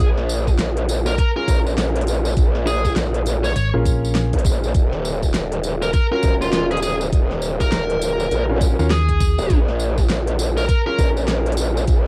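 Glitch hop with a swaggering, gritty attitude, this short cut from a longer piece moves at 101 BPM in 4/4 with a swung sixteenth-note feel, sitting in Bb minor and cycling from Bbm7 to Ebm7 and back. Up front, a growling, wobbling bass drives the low end through a formant filter, saturated and compressed with chorus and overdrive, next to a knocking electronic kick. A pop drum kit adds a fat snare and crisp hats, while a jingly, close and dry tambourine sits quietly underneath. A distorted, high-gain lead guitar carries the picked melody through tape echo, and from 1.4 s a smooth, vintage concert grand piano plays stabs in the background, pumping with sidechain and trailed by tape echo. A dark, round hollow-body electric bass surfaces only briefly, at 3.6 s and again at 8.8 s, and the whole piece carries the character of a cassette home recording with vinyl crackle and light reverb.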